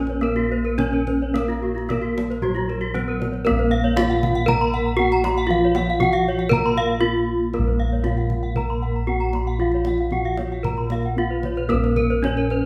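Opening at once on a bright, up-front bronze metallophone melody struck with a horn mallet over round, beating bossed gongs in the bass, this brilliant, hypnotic Balinese gamelan excerpt in Bb pelog at 116 BPM layers two airy metallophone arpeggio lines with shimmering beats from their paired tuning, a mellow, dark metallophone accompaniment played with padded mallets in the background, and a tight, saturated kendang from 0.1 s, the live ensemble set in a wet large-room reverb and pausing for a brief break at 6.8 s.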